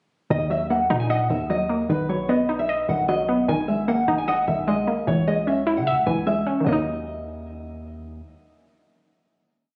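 Menacing and brooding, this short, complete hip hop piece in a trap style moves at 151 BPM with a half-time feel in Eb phrygian, tuned slightly sharp to A4 = 441 Hz. A dark, thumb-plucked nylon-string guitar carries the melody from 0.3 seconds, playing a classical-sounding looping line that repeats like a sampled loop through a low-pass filter. Up front beside it, a warbly, dusty pluck with a detuned sawtooth edge, chorus and a filter sweep plays a rising arpeggio in eighths, its lo-fi, noisy texture giving the loop a worn character. Underneath, a deep, boomy 808-style bass holds long sub-bass notes with pitch slides, sitting lower in the mix than the other parts. The hook cycles through Ebm, B, Absus2 and Dbm before landing on a final Ebm chord at 6.7 seconds, and the pluck is the last part sounding, ending at 9.8 seconds. The mix carries light, small-room reverb along with studio reverb and compression, and it was recorded on a phone in the room.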